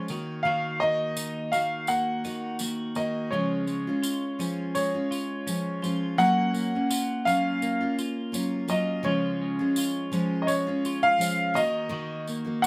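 Acoustic pop in Db major at 84 BPM with a light 16th-note swing, this sunny, heartfelt clip sets a brilliant, woody upright piano melody up front over a full-bodied picked dreadnought acoustic guitar, a twangy, compressed twelve-string electric guitar weaving clean arpeggios, and a jingly, close tambourine joining at 0.1 seconds, all in moderate studio ambience as the chords move from Ebm to Db, Gbmaj7 and back.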